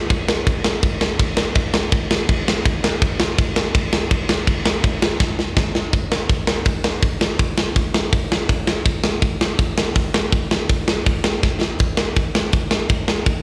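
A straight 4/4 punk beat at 164 BPM drives this energetic, rebellious excerpt, played on a tight, up-front acoustic metal drum kit with bright crash and hi-hat cymbals, a tight kick and a medium-tuned snare heard in a big, mid-forward room sound, with a drum fill at 5.2 seconds marking a shift into a new section and another at 11.4 seconds, all captured live at a gig through the venue's PA with recital-hall reverb around it.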